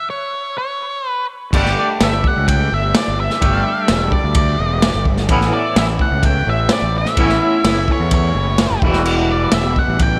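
Psychedelic rock, trippy and hypnotic, where a dark octave-fuzz lead guitar with dub echo plays the melody alone until the band enters at 1.5 seconds, bringing a twangy, double-tracked electric guitar riff with tremolo, a round, punchy overdriven fingered bass up front, and a gritty, saturated breakbeat kit with dark cymbals and a tight kick, moving from Gsus2 through Aadd9 to Emadd9 in an echo-heavy small room.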